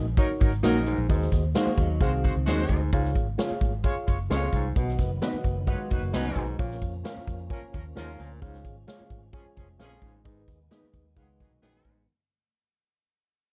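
A dark, warm production with light reverb frames this short, passionate cut of uptempo 1960s-style soul, driving along at 131 BPM in 4/4 and G# dorian, fading out across its full length. A swinging big-band drum kit sits up front in a big room, its punchy kick, medium-tuned snare and hi-hat sounding natural, while a vintage foam-muted fingered electric bass supplies a round, amped low end. A reedy, worn reed electric piano comps with a fast tremolo through its built-in speakers, slightly out of tune, as a mellow electric guitar with ensemble chorus adds clean, fingered stabs. A tight horn section carries a second line with light vibrato, and a smooth-topped baritone saxophone plays a low riff, joined in brief bursts at 1.6, 5.7 and 11.2 seconds by a twangy, slightly broken-up guitar through a small old amp. A very quiet tonewheel organ with key click and a slow rotary speaker enters at 4.8 seconds with sustained chords, beneath changes that move from D#m through G#7/D#, C#, B, A#m and back to C# before closing on G#m.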